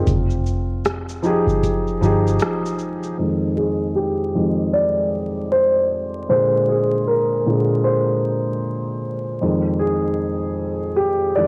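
A swung 77 BPM groove in 4/4 opens this hazy, melancholic lo-fi hip hop excerpt in F dorian, with a booming, dry analog drum machine (deep kick, metallic hi-hats, rim click and shaker) and a round, punchy foam-muted electric bass that drops out at 2.4 s, leaving the up-front, intimate felt-muted upright piano, softened by cassette tape and a low-pass filter, to carry on alone from 3.2 s under a filter sweep through Fm9, Bb9 and Fm7, all set in a springy home-cassette room flecked with vinyl crackle.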